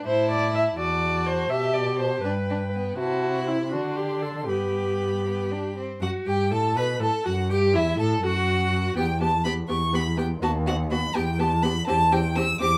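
A moderate large-studio reverb surrounds this spirited, lively excerpt from a quick classical-period movement for string quartet in 6/8. A clear, focused violin carries the high melody with vibrato, while a second violin, smooth and even, takes the inner line and a rich viola fills out the accompaniment, these three set at a distance. Up front, a single cello bows the bass line with soft attacks, portamento and expressive warmth, and the harmony turns toward E minor from 9.0 seconds.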